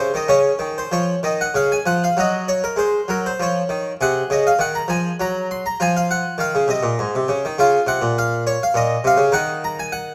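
A baroque-style classical suite movement for solo harpsichord in D-flat major, in 3/4 at a flexible, rubato pace of roughly 89-105 BPM, carrying a flowing yet solemn mood across this short cut from a longer piece. The Italian-style instrument sounds plucked and full, its two sets of strings placed up front by close, detailed microphones, ranging from Ab2 to C6 as the harmony moves from Db through Ebm7/Gb and Ab7/C back to Db, then to Bbm before the chords fall away at 9.3 seconds. A moderate recital-hall reverb with a 1.6-second decay gives the plucked tone a gentle halo.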